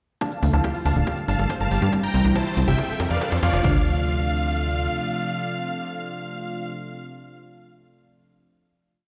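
Huge, detuned supersaw chords carry a pumping riff in thirds and sixths through a filter sweep in this euphoric, driving uplifting trance piece at 140 BPM in D minor, doubled very quietly by a brilliant grand piano over a thick unison pad, a round analog pluck arpeggio, an up-front nasal sequencer bass galloping in sixteenths, a punchy four-on-the-floor kick and a techno kit with smooth hats and crash, plus a background riser from 1.4 seconds, as the build gives way at 3.6 seconds to a final Dm7 chord ringing in a lush hall reverb.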